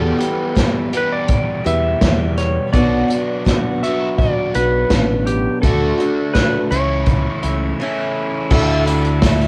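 A clean lap steel guitar with slide and volume swells carries the melody over picked, bright acoustic archtop guitar, a double-tracked crunchy overdriven guitar riff with phaser, round fingered electric bass and a roomy, distant unplugged drum kit played with bundle sticks entering at 0.2 s, in a nostalgic, open-road folk and heartland rock excerpt at 83 BPM in D major, with cassette tape grit, a brief break at 7.8 s, and a reedy tonewheel organ on slow rotary speaker plus a very quiet jingly tambourine arriving at 8.5 s on a Dsus2 chord.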